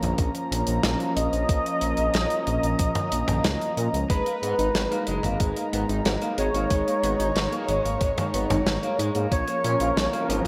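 An overdriven, thumpy electronic kick drives this nostalgic, cinematic synthwave excerpt at 92 BPM in G# dorian, beneath a dark, rumbling detuned saw bass and a mellow, chorused analog pad that both pump with sidechain, an up-front studio kit of hi-hat, snare and toms in gated reverb, a smooth supersaw melody with cassette-tape colour, tape echo and shimmer reverb from 1.2 s, a slightly broken-up picked electric guitar playing arpeggios through harmonic tremolo from 4.1 s, and a background riser at 9.9 s, as the chords move from A#m to G#madd9 and back.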